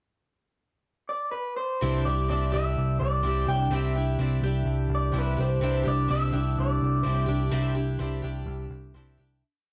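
Jangly and warm, this short folk rock and heartland rock piece moves at 126 BPM in a straight 4/4. It opens with a pickup bar in which a twangy, slightly broken-up electric guitar through a small old amp enters at 1.1 seconds with a motif-based melody, colored by spring reverb, analog delay and cassette tape. At 1.8 seconds the pre-chorus arrives on a Cadd9 chord as a shimmering, octave-doubled twelve-string acoustic guitar adds folk strumming in open chord shapes and a round, up-front electric bass drives eighth notes beneath, all on a home cassette recording with light reverb that fades out from 7.5 seconds.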